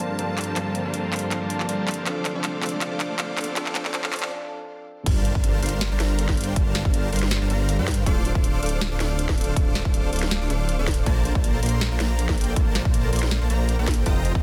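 This dreamy, lush future bass excerpt at 160 BPM in G minor opens with a build-up, where a tine electric piano with medium tremolo and tape echo, a clear studio string section holding sustained chords, and a mellow concert harp playing arpeggios in the background with vintage 12-bit sampler grit all pump against the sidechain. A huge, dense compressed supersaw riff moves through a filter sweep over a trap drum kit with a sharp snare, bright hats, handclaps and crash, which plays a drum fill until 4.3 seconds, while a very quiet riser adds tension. The strings drop out at 4.3 seconds for a short break, and the electric piano follows at 5.1 seconds. At 5.1 seconds the drop lands with an impact, bringing in a thick, detuned saw bass with chorus, up front, and a punchy, layered electronic kick drum that sits up front too. The half-time feel carries a light swing on the 16ths as the chords move from Gm11 to Dm7 and on to Bbmaj9. 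The sound is dry and densely limited, with a heavily compressed modern finish.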